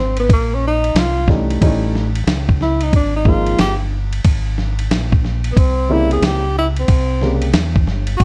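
A breathy tenor saxophone solos with vibrato and scooped notes through this cool, smooth jazz-hop excerpt, carried by a round, punchy dub-style fingered bass and a gritty, dusty sampler-style kit with a thumpy kick from 0.2 s, while a woody, worn, slightly detuned upright piano joins at 1.3 s, all under light reverb and a dark production.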